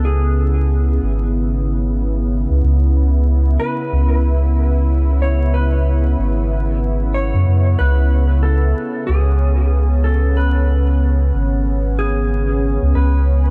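A round, up-front sub bass, a smooth, detuned analog pad with chorus and a dark, clean slide lap steel carrying the melody all sound together from the start of this 13.5-second excerpt of deep, spacious ambient dub in C# minor, tuned to A4 = 436 Hz. At 93 BPM in 4/4 with a light swing on the sixteenths, the pad holds a sustained C#m7 chord while the lap steel, dressed in dub echo, sits quietly in the background. Light reverb, an echo-heavy mix and a bed of vinyl crackle give the recording its hazy, roomy feel.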